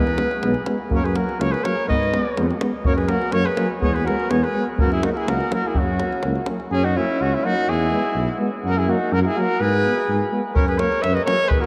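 A soft-attacked, mellow trumpet carries the melody up front in this exuberant, wild Balkan brass band excerpt at 124 BPM in 2/4, with a clear, vibrato-laden alto saxophone on the second line and a mellow, smooth-topped tuba anchoring the bass. A dark euphonium and a French horn sit in the background as close-miked accompaniment, while a tight, dry davul drives the beat until 6.7 seconds and returns at 10.6 seconds. The whole band rings through a vast, echoing cathedral reverb, with the harmony in F# mixolydian cycling through E, F# and G#m.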